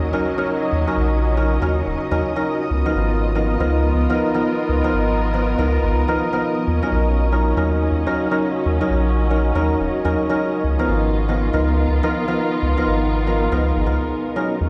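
A brief electronic impact in the background opens this hypnotic, smooth house excerpt at 0.0 s alongside a round, nasal analog bass up front, hollow, mellow organ-like stabs colored by ensemble chorus, cassette tape and digital delay, and a veiled string section bowed con sordino with light vibrato, while a very quiet, moody pad of detuned sustained chords slips in at 0.1 s, the whole mix ringing in a bare stone room with light reverb as swung sixteenths cycle between Ebm7 and Db13.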